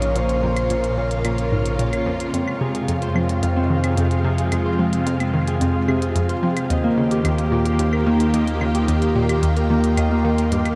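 A ringing, fingerpicked Celtic harp sits up front with tape-echoed arpeggios from 2.3 seconds, after a horn-like synth lead with vibrato sings briefly over the opening bars of this expansive, luminous slice of sequencer-driven space music at 110 BPM. Beneath it, a swirling phased string machine holds chords moving from Bb minor through F minor to Eb, while a fat, saturated analog bass anchors the low end and a round, detuned pluck riff ticks along in the background. Clicky electronic hi-hat and claves and a bubbling, resonant stepped-filter texture add motion, all bathed in a long shimmer reverb within a dark production.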